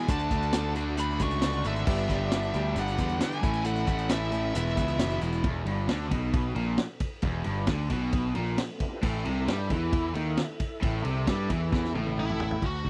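A bluesy, distorted lead guitar sings over a fuzzy, up-front picked bass, a punchy vintage drum kit with a high-tuned snare and dark cymbals, a bright riffing cranked stack guitar, a hollow-bodied overdriven semi-hollow guitar riffing in the background, a very quiet boxy acoustic archtop guitar until 5.5 seconds, and a faint tonewheel organ with key click and slow rotary speaker in this sunny, driving classic rock cut at 134 BPM, recorded dry and close in 1970s studio style, moving from D, G, A and E chords to E5 and A5 riffing at 5.4 seconds before a drum fill at 11.7 seconds.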